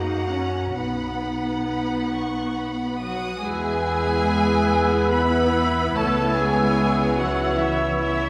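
In a rubato 3/4 at roughly 63-76 BPM, this tender, warm slow romantic movement for symphony orchestra opens in B major, with a rich, close chamber violin section singing the expressive vibrato melody. A mellow clarinet and a focused second violin section carry inner lines over viola, cello and double bass sections, which form the accompaniment and the smooth, even bass. At 3.4 s the music moves to E major, as an airy, distant flute ensemble, a punchy bassoon, a French horn section holding sustained chords and, from 3.5 s, a solo oboe join in, all bathed in the wet reverb of a church or concert hall.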